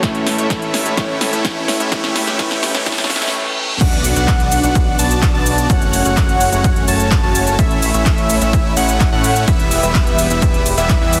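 Festival progressive house with an anthemic, euphoric mood, this straight 4/4 cut opens with a build-up where a background baby grand piano with tape echo, an airy chorused and phased pad with sampler grit, bright detuned supersaw chords, fat wave-folded analog bass and an overdriven big-room kit with crisp hats and a drum fill rise under a very quiet riser and reverse cymbal, the piano, pad, supersaws and bass pumping against a punchy, up-front kick, until the drop at 3.8 seconds brings an impact and a bold, mellow unison lead playing arpeggios with vibrato, ring modulation and tape echo over a dense, heavily limited master with light reverb.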